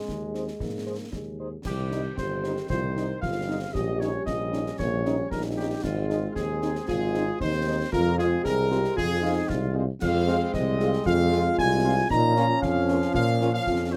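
A dark trumpet section carries the melody up front in this rousing, spirited military-style march for wind band in 2/4, cut from a longer piece. A warm tuba anchors the bass, also up front, while a euphonium with soft attack and light vibrato takes a second line and a French horn section with a smooth top adds accompaniment behind them, over mellow sustained trombone chords. Concert snare drum, concert bass drum and clash cymbals sound close and dry, and light reverb lends the band a touch of space as the march moves into its second section at 1.7 seconds.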